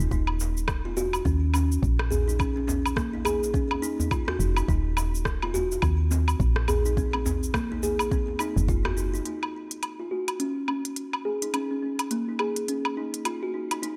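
A mellow kalimba sits up front in this hypnotic, earthy organic downtempo piece, its hollow, fingertip-plucked arpeggios running through a low-pass filter and a digital delay. Beneath it, a round, dark FM bass with a woody, fast attack that quickly decays sits close, while a smooth, tape-tinged afro-pop kit of cabasa, hi-hat, rim click and woodblock carries a swung 4/4 groove. A soft, overdriven electronic kick sits underneath, and a deep acoustic djembe sits in the background as though in a small room. The harmony rocks between open Eb7 and rootless Ab7 colours, all set in a digital ambience. By 9.3 seconds the bass, kick and djembe have dropped away, leaving the kalimba and kit as a filter sweep moves over the kalimba until this section of a longer piece ends at 14.0 seconds.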